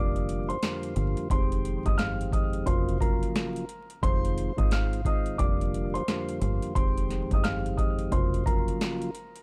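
Moody and gritty, this short boom-bap hip-hop cut from a longer piece rides a swung 16th-note groove. A booming analog drum machine enters at 0.2 seconds and sits up front, with a deep kick, crisp snare and metallic hi-hats pushed through overdrive and the grit of a vintage 12-bit sampler. A percussive tonewheel organ, also up front, supplies mellow, clean accompaniment through a slow rotary speaker. Above it, a dark upright piano carries the woody, long-sustaining melody, echoed by an analog delay. A deep dub fingered electric bass stays round and foam-muted in the background, its low notes ending at 8.7 seconds. The chords circle from Gm7/F through Abmaj7/F, Gbmaj7/F and Fm7, and the dry, hardware-recorded sound carries a layer of vinyl crackle.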